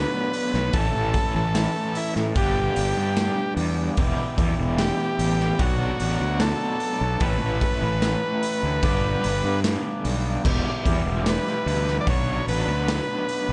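Hypnotic and mysterious, this psychedelic rock excerpt moves at a straight 74 BPM in 4/4 and E dorian, cycling through Bm, Aadd9, Gmaj7 and Em7. An overdriven, buzzy vintage combo organ carries the melody up front with light vibrato and slapback echo, beneath it a very quiet, flute-like tonewheel organ holds sustained chords through a slow rotary speaker with audible key click. A bright, double-tracked garage guitar picks an overdriven riff with tremolo, a fuzzy, punchy fingered bass sits up front, and from 0.3 s a gritty, saturated drum kit with dark cymbals and a pumping small-room sound drives everything in a lightly reverberant, rolled-off mix.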